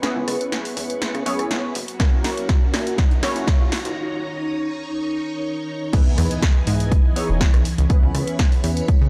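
A straight groove drives this feel-good, funky filtered disco house excerpt, as a tape-warm analog drum machine plays a fill of snare, rim click, hi-hat and crash from the start and an up-front, punchy electronic kick joins at 2.0 s. Beneath a filter sweep running from the start, with a break from 4.0 s, a very quiet riser builds to an impact as the drop lands at 5.9 s. A plucky, saturated sawtooth bass, a detuned, warbling vintage polysynth comp with chorus and phaser, and a lush string machine with ensemble chorus all pump against the kick, all over a dry, gritty hardware sound with digital ambience.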